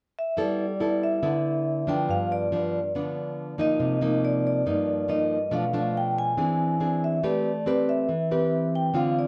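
A straight 4/4 bossa nova groove at 140 BPM carries this sunny, breezy fragment cut from a longer piece, tuned to A4 = 438 Hz. A full-bodied, fingerpicked nylon-string guitar sits up front from 0.4 seconds, comping through G6/9, G7, Cm11, Bm7b5, E7b13 and Am9. Meanwhile, a close-miked vibraphone with medium mallets carries the melody from 0.2 seconds, its metallic, ringing tone shimmering with fast motor vibrato. The whole is set in a moderate large studio reverb and coloured by worn, old cassette tape with warbly pitch drift.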